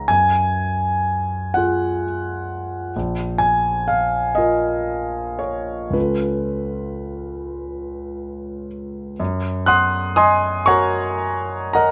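A concert grand piano begins alone on a Gbsus2 chord, its sound clear and intimate, with the noise of the action audible beneath the notes. This is impressionist classical solo piano in 6/8, dreamy and luminous, moving with a free rubato feel at an unhurried pace. The instrument sits up front and present, spanning deep bass to high treble, and its polished tone rings with long sustain inside a light reverb. The harmony drifts through Bb5 to a Dbaug7 at 5.9 seconds, and at 9.2 seconds the opening material returns over a Gb6 chord. The passage is cut from a longer piece and breaks off at 11.9 seconds.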